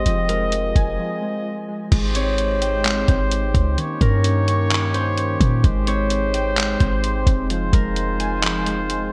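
Blissful and dreamy, this atmospheric cloud-rap excerpt moves at 129 BPM in a half-time feel in Ab major, with a fingerpicked Celtic harp melody ringing through delay over mellow brass chords pumped by sidechain, warbling detuned synth arpeggios with chorus and delay, a deep, boomy 808-style bass and a thumpy, muffled sampler-style drum kit with gated reverb, while an airy, breathy wind-like texture drifts in only from 0.1 to 1.9 seconds, a break arrives at 1.0 seconds, and chords cycle from Fm7 through Abmaj7 and Eb7 in a bright 1980s-style digital production.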